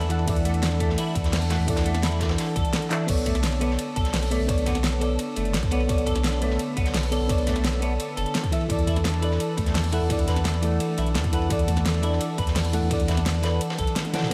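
A straight 4/4 liquid drum and bass groove rolls at 171 BPM, built from a punchy electronic kick entering at 0.3 seconds, a layered pop kit with a fat snare, metallic hats, claps, toms and cymbals, and a gritty, saturated breakbeat kit with dark cymbals and a rolled-off top, with drum fills at 2.9 and 14.0 seconds. Underneath, a deep, round sine sub bass holds the low end while a lush, nasal sawtooth pad breathes with chorus and sidechain pumping. Up front, a soft, full-bodied FM electric piano with chorus and diffuse ambient delay shares the E7sus4 and Bm9 harmony with clean picked guitar arpeggios carrying ensemble chorus and analog delay, all set in light studio reverb in this lush, rolling excerpt from a longer piece.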